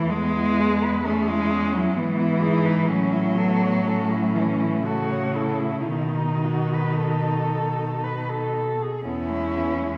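Tender and warm, this short classical passage for a cello ensemble moves in a slow, lyrical 3/4 at 55-66 BPM, with a rubato feel in E major and tuning set at A4 = 441 Hz. Four bowed cellos, each a single player with a mute, sound together from the start, giving a dark, veiled color shaded with vibrato. The melody cello sings in its middle range while a second line lies above it, both with a smooth top. Beneath them an accompaniment cello sits up front, and a close bass cello anchors the lowest register until 9.9 seconds. The harmony moves gently from E through E/G# and A to B before settling back on E at 9.1 seconds, all bathed in the generous, wet bloom of a concert hall reverb lasting 2.1 seconds, as if lifted from a longer piece.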